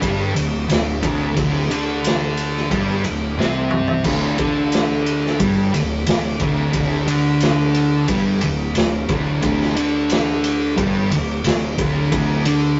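A straight 4/4 pulse at 89 BPM drives this brooding, ominous stoner and doom metal fragment, where an up-front, distorted fuzz guitar grinds out a dark riff over a D7sus4 chord, joined by a second, very quiet fuzz guitar also playing a riff, while a growly, bright, overdriven fingered bass rumbles beneath and a gritty, punchy acoustic drum kit of kick, medium-tuned snare, crash, ride and toms, rolled off on top, fires a fill from 3.4 to 4.1 seconds, all captured as a rough, tube-saturated rehearsal-room recording with light reverb and a muffled top end.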